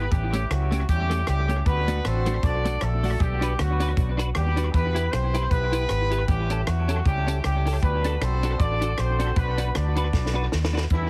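Ska at 156 BPM with a lightly swung, energetic and mischievous feel, this short cut from a longer piece sets a mellow, octave-doubled horn section carrying the melody with vibrato and tape echo over a bright, twangy clean electric guitar thickened by ensemble chorus, a dark, round, foam-muted fingered bass sitting up front, and a dry compact cocktail kit with a high-tuned snare, punchy kick, hi-hat and rim click that plays a fill from 10.1 seconds, all wrapped in a heavily compressed, radio-like sound with light reverb as the chords move through A7, D, Bm and Em.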